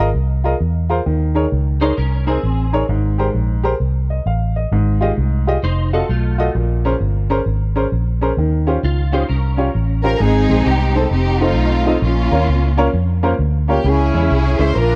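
Swung eighths in 4/4 drive this jubilant, soulful gospel excerpt, where a woody, short-sustained upright piano and a round, punchy, foam-muted electric bass carry the whole passage, a dark, scooped clean electric guitar with ensemble chorus adds a soft second line briefly at 1.8 seconds and again from 5.6 to 10.0 seconds, and from 10.0 seconds an expressive bowed string section takes the melody with vibrato and portamento, all in a dry, warm production.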